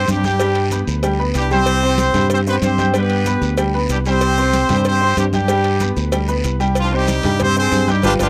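This fiery, driving salsa excerpt at 188 BPM opens with a brilliant, close-miked horn section carrying the octave-doubled melody with light vibrato over a bright, woody upright piano and a dark, round, punchy fingered electric bass, as ringing congas, a tight high-tuned cowbell, a raspy guiro and grainy maracas join at 0.1 seconds in the background, the chords alternating between G and C5 in a dry, close 1970s-style small room before a band accent at 8.0 seconds.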